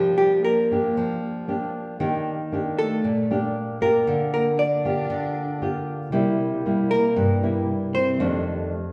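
A hollow-body electric jazz guitar carries the picked melody up front while a woody, bowed cello with vibrato plays a dark, close second line and a fresh-stringed, thumb-plucked classical nylon-string guitar accompanies in this relaxed, romantic bossa nova fragment, with a clean tine electric piano slipping into the background at 6.1 s and the whole set in a wet recital-hall reverb with a softened top end.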